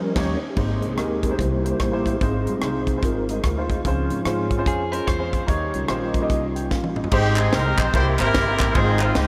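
Soaked in a huge, dreamy reverb, this uptempo, swung gospel passage feels reverent and soulful. It opens on a band accent before a mellow, flute-like tonewheel organ with fast rotary speaker takes a solo over sustained chords from a dark, very quiet French horn section, while an intimate grand piano with lush chorus, woody pizzicato upright bass and a tight funk drum kit with a high-tuned snare carry the groove. A clean, picked electric guitar slips in briefly in the background, and a drum fill leads at 7.1 seconds into a clear, jazz-style horn section melody with tape echo, joined by hollow group handclaps.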